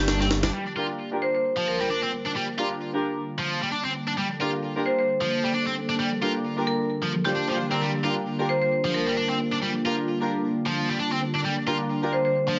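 A bright, double-tracked high-gain guitar riff drives this energetic, gritty breakbeat excerpt in G minor at 132 BPM, its tube-saturated distortion roughened by 12-bit sampler grit, a low-pass filter and digital delay, while a swirling phased analog pad holds sustained chords under a filter sweep from 0.5 seconds. Dark, woody string stabs with vibrato enter at 0.8 seconds, and a hard-mallet marimba plays a percussive melody with AM-radio coloring and delay. Only in the opening half-second do a thick, menacing detuned saw bass, a pitched-up sampler-style kit with a high-tuned snare and hi-hat, and a brief touch of dry congas appear, all under a heavily compressed, radio-like sound in a moderate studio reverb.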